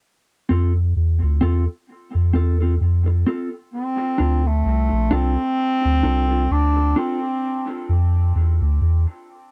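A dark, clean electric guitar with dub echo and a round, deep sub bass open this spacious dub reggae fragment in D minor at a slow, swung 65 BPM, before a distant, classical-style bass clarinet, also echoed, enters at 3.7 s to carry the melody over a dry, close 1970s-style studio sound.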